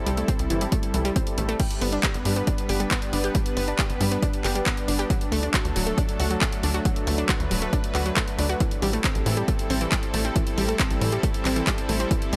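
Euphoric and soaring, this uplifting trance passage at 137 BPM in 4/4 moves through C6, G, D and Am7, with a lush, detuned supersaw pad holding sustained chords under a filter sweep, round, warbling analog pluck arpeggios carrying chorus and dub echo, a nasal, driving sawtooth-and-square sequencer bass, and a house kit of crash, handclaps and warm hats over a punchy electronic kick from 0.3 seconds, while sidechain pumping breathes through the pad, pluck, bass, hats and cymbals inside a digital ambience.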